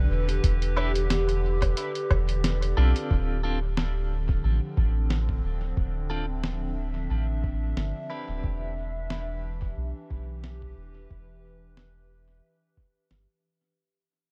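Hazy digital ambience surrounds this spacious ambient dub excerpt, which fades out from 3.1 seconds to the end. A warbling, detuned tape-like pad holds nostalgic sustained chords under chorus, phaser and its own reverb, moving from Em7 to Dm7 and back to Em7. A deep, round sub bass sits up front with a mellow, soft tone. A muffled, pitched-down sampler-style kit adds hi-hat, a fat snare and woodblock, all bathed in dub echo, while a compressed, thumpy electronic kick pulses under a gently swung groove. A bright, twangy clean electric guitar drops scooped stabs with tremolo and dub echo until 8.7 seconds. At the very start, a very quiet handpan rings out airy, meditative arpeggios on nitrided steel for just 1.5 seconds.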